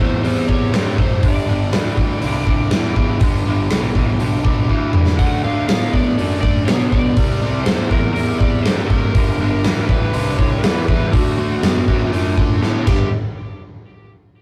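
A rough rehearsal-room recording with warm saturation and a moderate booth ambience carries this raunchy, swaggering blues rock and southern rock excerpt in G major at 121 BPM, where a biting, double-tracked overdriven guitar riff with spring reverb and a growly, bright fuzz bass sit beneath a fingered slide guitar melody touched with digital delay, while a big, dark acoustic drum kit with a punchy kick stands up front and adds fills at 4.7 and 12.6 seconds over a C, G and D progression.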